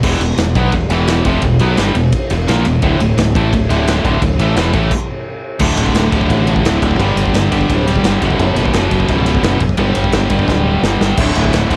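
Heavy metal in a straight 4/4, aggressive and relentless, cut from a longer piece and heard through the small-room ambience of a home cassette recording. Two bright, picked distorted guitars drive the riff together, a high-gain one up front and a tighter one sitting in the background, both carrying a cassette-tape grit. Beneath them a growling fingered electric bass, direct and amped with overdrive, sits prominently in the mix. An acoustic studio drum kit with a punchy kick, medium-tuned snare, crash and ride cymbals and a pumping room sound pushes the whole band forward. The music halts in a sudden stop from 4.9 to 5.6 seconds before the second section begins, and a drum fill at 10.5 seconds leads into the close. The chords move through power-chord shapes such as E5, D5 and G5, with a B5/F# passing through the second half.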